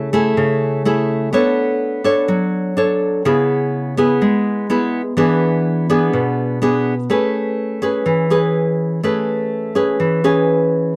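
A full-bodied nylon-string guitar, fingerpicked in a classical manner and placed up front with light reverb, carries this breezy, relaxed bossa nova fragment alone at 125 BPM, moving through Amaj7/C#, Bm9, C#m7 and E7 before settling into A major on an Amaj9 at 7.1 seconds, and stopping at 10.9 seconds as a cut from a longer piece.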